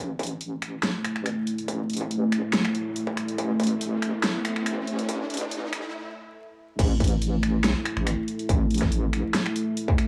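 A deep, wobbling bass of detuned square and sine tones with tube saturation opens this dark, meditative deep dubstep excerpt at 141 BPM in a half-time swing. It is soon joined by an up-front distorted electronic kick, a layered drum kit with a huge snare, bright hats, finger snaps and crash cymbal, and a moody, full-bodied sawtooth pad with a slow attack. A quiet electronic riser builds from 1.4 seconds into a brief break before the drop lands at 6.8 seconds, inside a dry, gritty sound with light reverb and vinyl crackle.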